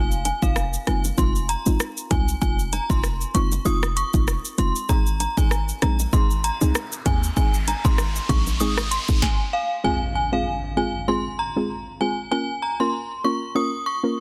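Hypnotic and bouncy, this dancehall excerpt sets an up-front, inharmonic FM synth chime with ensemble chorus and tape echo over a dark, chorused soft round pluck, a punchy short 808-style bass, an afro-pop drum kit with deep kick, sharp soft-clipped snare and metallic hats, and very quiet low-tuned bongos, while a riser from 6.5 seconds leads to an impact at 9.8 seconds, by which point the bass and drums have stopped and the chime and pluck carry on in a nearly reverb-free, densely limited mix.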